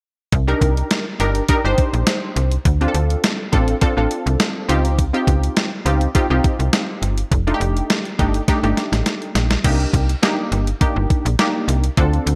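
Slick and danceable, this early-eighties boogie funk excerpt sets a snappy FM bass with a metallic attack against a clean, sampler-style digital drum machine with a thumpy kick and gated reverb, while a punchy, detuned sawtooth polysynth comp with a filter pluck and chorus joins at 0.5 s over chords from Cm7 through Dbmaj9#11 and F13, before a drum fill at 8.5 s leads back to Cm7 at 9.6 s in a digital ambience.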